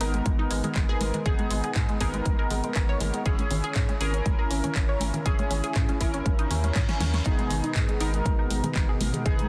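Driving and dreamy, this progressive house excerpt in G# minor at 120 BPM sets tight, detuned sawtooth arpeggios and glossy chorused polysynth stabs over a round, deep analog bass, all breathing with sidechain pumping, while a punchy up-front electronic kick from 0.3 s, a big-room kit with a huge snare, handclaps and hi-hats, and soft-handed congas in the background drive the groove, before a reverse cymbal from 6.5 s and a drum fill at 6.8 s usher in a smooth, warbling vintage pad at 7.3 s under light digital reverb and a dense, heavily limited master.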